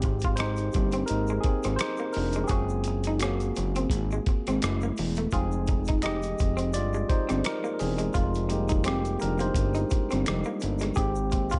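Smooth and sultry, this neo-soul R&B fragment sits at 85 BPM with a lightly swung 16th feel. A barky, lightly overdriven tine electric piano takes the solo up front over a gritty, pitched-down boom bap sampler-style kit with a thumpy kick, hi-hat and rim click. A fat, detuned sawtooth analog bass, a slightly broken-up, lo-fi picked electric guitar through a small old amp, and a background egg shaker with finger snaps fill out the track. Chords move from Abmaj7 through Gbmaj9#11, Gbm9 and Fm9 before returning to Abmaj7 at 11.0 seconds, all wrapped in dark digital ambience.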